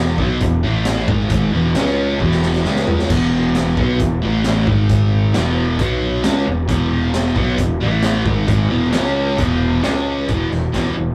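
A rough rehearsal-room recording with tube saturation and a tight, wet booth ambience frames this confident, driving classic rock excerpt in a straight four. An up-front, double-tracked sludgy guitar riff, overdriven and picked, moves through E5, A5 and C#5 chords from the start, backed by a punchy, bright fuzz bass. A gritty garage drum kit with a boomy kick, high-tuned snare and rolled-off top pumps in the small room and plays a fill at 2.2 seconds.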